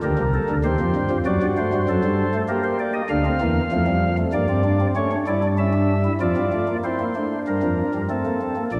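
A pipe organ on soft flute stops carries this brief, contemplative classical piece alone, a baroque-style fugue in three parts heard as a short passage cut from a longer work. It moves at 97 BPM in 3/4 with a straight feel, and its serious character comes through in a harmonic path that opens on Gm and passes through Cm/Eb, D7/F#, Dm and A7. The organ's baroque voicing sounds warm and sits up front, with a gentle chiff at the start of notes and a tremulant giving the tone a faint waver. Its range reaches from Bb1 up to F5. A new section begins at 6.8 s, turning toward C and then settling on Am as the passage breaks off at 8.8 s. The instrument is bathed in a wet church reverb with a three-second decay, lending the whole a spacious, sacred atmosphere.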